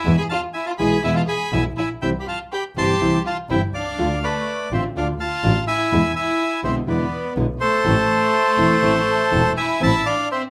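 A reedy, bright bandoneon carries the melody up front from the start, with a smooth-topped, earthy violin section bowing a second line beneath it, in this sultry, melancholic tango passage in A harmonic minor, taken at 123 BPM in 4/4 with a rubato feel. A dark, full-bodied nylon-string guitar joins at 0.1 seconds with fingerpicked accompaniment, alongside a rich bowed double bass played close, with vibrato, soft attacks and expressive portamento. The chords move from E through C, Dm and E7 before settling on Am, all set in a moderate club reverb, and the passage is cut from a longer piece.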